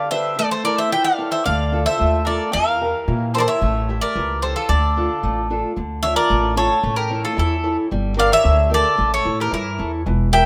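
Moody and bittersweet, this Greek folk excerpt moves at 112 BPM in 2/4, with an up-front, metallic bouzouki carrying the melody, some of its strings octave-doubled, over a bright mandolin second line and a boxy, fingerpicked parlour steel-string guitar, while a thumpy, gut-string upright bass enters pizzicato at 1.5 s, and the tune shifts from D minor into D harmonic minor at 5.8 s under light reverb.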